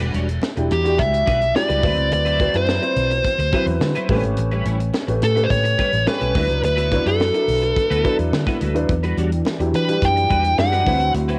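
Polished 1980s jazz-funk pop with a nocturnal, slick mood, cut from a longer piece and played in a straight 4/4 over rich ninth and thirteenth chords, with the character of home cassette recording and light small-room reverb. A dark, distorted fuzz lead guitar carries the melody up front, while a bright, twangy twelve-string electric guitar riffs with ensemble chorus and an intimate grand piano with audible action noise and lush chorus plays accompaniment. A round, punchy foam-muted electric bass, a tight acoustic funk kit with a high-tuned snare, and very quiet, dry congas drive the groove, and a smooth, detuned analog pad slips into the background at 8.9 seconds.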